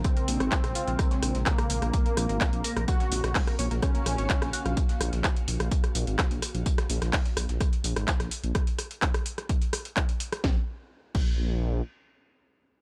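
A menacing, saturated detuned saw bass pumps under a punchy up-front kick and a techno kit of cracking snare, metallic hats, claps, rim clicks and crash in this hypnotic, driving melodic techno excerpt at 127 BPM over Bbmadd9 and Ebm7, with a thick, nasal, warbling unison lead and a tight, wave-folded sequenced arpeggio through analog delay until 4.8 s, a morphing wavetable pad with ensemble chorus, phaser and reverb until 6.6 s, and a very quiet, tape-dusty soul sampler kit with hi-hat, snare and tambourine until 8.4 s, all in a dry, gritty digital ambience.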